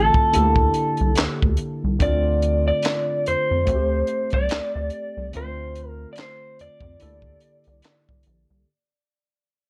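Worn, warbling cassette tape with light reverb colors this fading excerpt of introspective, late-night R&B and neo-soul at 72 BPM in D minor, where a dark, slightly broken-up electric guitar through a small old amp carries the melody over barky, lightly overdriven tine electric piano with analog chorus, a rubbery, hollow square bass and a dry, punchy compact cocktail drum kit of kick, high-tuned snare, hi-hat and handclaps, all moving through C13, Dm7 and Am7 with a 56% swing on the 16ths.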